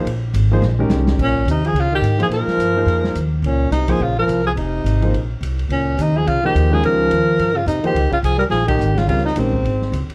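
A swung 4/4 pulse carries this cool, spiritual modal jazz excerpt, where woody pizzicato upright bass and an intimate grand piano with audible action noise sit on a Bbm11 chord, and a drum kit with dark cymbals and a boomy kick plays a fill at 0.6 seconds; at 1.2 seconds a breathy, whispered alto saxophone takes the melody over a close-miked trombone second line with light vibrato, before a band accent at 8.7 seconds, all in light reverb.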